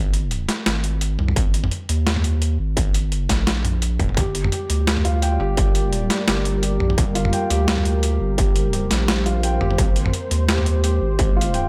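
Lightly reverberant, this spacious, cinematic half-time drum and bass excerpt opens on a deep, thick saturated sub bass and a gritty, pitched-down sampler-style drum kit of hi-hat, high-tuned snare and toms, overdriven and set up front, joined at 1.4 seconds by a tape-warm distorted electronic kick. A soft, felt-muted upright piano with audible action noise enters at 4.2 seconds playing delayed arpeggios. At 5.3 seconds a moody, detuned analog pad with chorus and sidechain pumping slowly swells in underneath on sustained chords, moving from Gm toward Ab.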